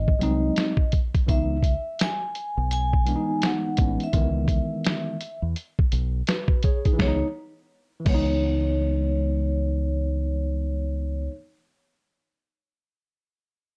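A dark, smoky jazz-hop excerpt at 84 BPM in C# minor with a swung 16th feel, where a muffled, compressed sampler-style drum kit with a thumpy kick and vintage 12-bit grit plays until 8.3 s, a round, deep fingered electric bass and a worn, slightly out-of-tune tine electric piano with light overdrive sit up front over a G#7 to C#m7 change, and a metallic, ringing vibraphone with slow motor vibrato carries the cool melody through plate reverb.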